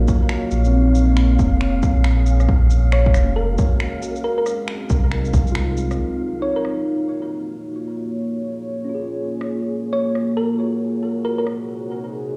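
A deep, detuned ambient pad, a mellow tine electric piano with vintage 12-bit sampler grit, a round sub bass pumping under sidechain, an airy wind-like noise texture and a gentle, tine-like synth pluck open this melancholic, rainy future garage excerpt in Eb dorian at 137 BPM with swung 16ths; an overdriven, up-front kick and tape-warm shaker, finger snaps and rim click join at 0.1 seconds, the chorused, delayed pluck melody drifts in and out over moody Ebm9, Bbm7, Gbmaj9 and Ab9 chords, and the bass and breathy wind texture fall away at 6.0 seconds, the whole mix heard through cassette haze and large reverb.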